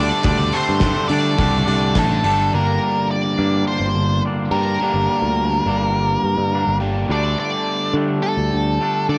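Recorded at home onto cassette with a light reverb, this short indie rock fragment has a cool, bittersweet mood in a straight four-beat feel. An up-front octave-fuzz lead guitar carries the melody throughout, its dark, distorted tone coloured by tape and an analog delay. Beneath it, an overdriven electric guitar plays a compressed, bright riff with subtle chorus, while a clean, twangy electric guitar with a scooped tone plays a second riff. A round, picked electric bass sits up front. At the opening, a very quiet growling trumpet adds a raspy, gritty second line with vibrato and scooped notes until 2.2 seconds, and a loose indie drum kit with a punchy kick, medium-tuned snare and hi-hat plays in a pumping room from 0.2 to 2.4 seconds. The harmony shifts from a suspended chord into G minor before the suspended chord returns near the end.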